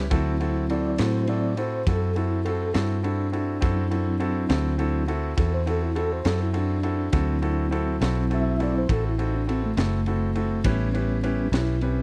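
A dry, close 1970s-style studio sound frames this laid-back, rollicking slow blues excerpt in 12/8 at 68 BPM, where a mellow, flute-like tonewheel organ through a fast rotary speaker takes the solo over sustained chords moving from D9 to A9 at 10.6 seconds, backed by a clear, intimate grand piano with audible action noise, a round, foam-muted vintage fingered electric bass sitting up front, and a crunchy, saturated breakbeat kit with a punchy kick, high-tuned snare and dark ride cymbal entering at 0.1 seconds.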